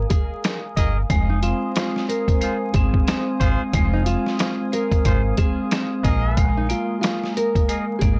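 A dry, gritty recording with transformer saturation and vinyl crackle frames this moody, reflective boom-bap hip-hop excerpt, swung on the sixteenths and cut from a longer piece. A fingerpicked nylon-string guitar with audible finger squeak carries the melody, set over ringing hard-mallet vibraphone with slow motor vibrato, a detuned sawtooth pad with chorus, and a round, foam-muted fingered electric bass. The bass sits up front with a compressed, pitched-down sampler-style drum kit of thumpy kick, snare and hi-hat that enters at 0.1 seconds, while a jazz-style trumpet section adds stabs with light vibrato and tape echo from 0.8 to 7.8 seconds as the chords move from Bb7sus4 to Fm7 and back.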